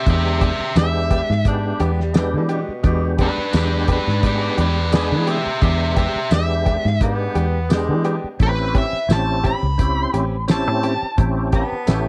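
Gritty and swaggering, this straight-eighth soul blues excerpt moves at 86 BPM in 4/4, with a smooth, bright overdriven lead guitar carrying the melody up front over an E7#9 vamp that shifts to A7#9 at 8.4 seconds. A full, percussive tonewheel organ with chorus vibrato and a slow rotary speaker fills the middle. A round, foam-muted fingered bass sits forward, and a dry, dark drum kit thumps along with a fat snare, tight kick, hi-hat and tambourine. Tucked in the background, a compressed, clean direct-recorded guitar adds spring-reverbed stabs, while a distant, roomy tenor saxophone with vibrato and scooped notes joins at 1.5 seconds with a jazz-style second line, all inside a small room ambience.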